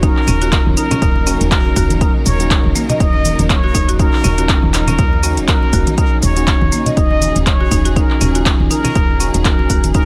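A small room ambience frames this short afro house excerpt, which sits in Eb minor at 121 BPM in 4/4 with a swung sixteenth-note feel and an earthy mood, holding on a single Ebm7 chord throughout. A punchy, overdriven electronic kick leads the mix, joined by a produced afro-pop kit of handclaps, metallic hi-hats and shaker with a tape-tinged character, while close acoustic congas sit in the background. Underneath, a woody, dark FM bass with a fast attack and round decay moves between Eb1 and Eb2, pumping with the sidechain alongside the string section, marimba and electric piano. A buzzing, dry marimba struck with hard mallets plays vintage-sounding arpeggios through a delay, a mellow, clean tine electric piano adds delayed stabs, and a lush symphonic string section holds bowed, vibrato-laden chords with a smooth top. Out front, a brilliant, forceful trumpet with a plunger mute carries a jazz-style solo melody between Bb4 and Eb5, its wah-wah tone and vibrato close-miked and trailed by delay. 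Every part plays through the full 10.1 seconds except the bass, which stops just short at 10.0.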